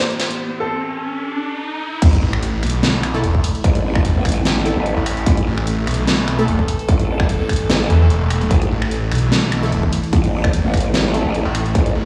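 A growling, wobbling bass sits up front through the drop from 2.0 seconds, joined by a snarling, detuned sawtooth bass with distortion and overdrive, making this heavy wobble dubstep at 148 BPM in a half-time feel feel menacing and chaotic. The cut opens on a brief build-up, where a clear, vintage concert grand piano plays a short melody with tape echo over an evolving, morphing wavetable pad that carries bright sustained chords with phaser, built-in reverb and sidechain pumping in the background. A drum fill and the riser-and-sub-drop effect lead into the drop, where an impact hits at 2.0 seconds and a punchy, overdriven electronic kick joins the big-room dance kit with its huge snare, finger snaps, hi-hat and crash. Detuned supersaw stabs with lush chorus and tape echo cut through in two bursts, the first starting at 3.1 seconds. The whole mix sounds as if it is played on a big sound system in a bare stone room, with light reverb and small-room ambience.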